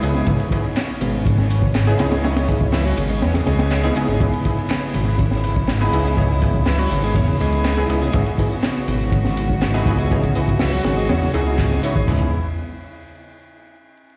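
A fat, detuned sawtooth analog bass sits up front in this energetic, swaggering breakbeat cut, riding a crunchy, saturated breakbeat kit with a punchy kick, high-tuned snare and dark cymbals, while a layered house kit adds metallic hats, handclaps and tambourine. Over a C#m7 chord, a bright tonewheel organ shouts a riff in the background through overdrive, slow rotary speaker, 12-bit sampler grit and digital delay. Bold orchestra-hit-like synth stabs with ring modulation and a noise layer punch over an earthy chamber string section whose sustained chords pump against the beat, all heard as if played on a big sound system in a bare room with vinyl crackle.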